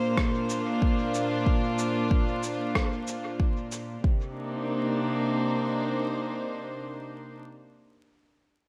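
A chamber string section leads this meditative, deep fragment of ambient dub, its close, reedy gut-string tone carrying light vibrato as the ensemble bows sustained chords up front from the opening through 7.4 seconds. The harmony rests on Bbadd9 before moving to Cm7 at 4.0 seconds, giving the short passage a slow, inward shift in colour. Underneath, a layered electronic kick sits deep and forward, running from 0.2 to 4.2 seconds in a swung 4/4 feel. A rim click and shaker, muffled and pitched down with a tape-warm, compressed, sampler-style character, sound through dub echo at a lower level until 3.9 seconds. Moderate echo-chamber reverb and a bed of vinyl crackle surround the recording, lending it a dusty, roomy atmosphere.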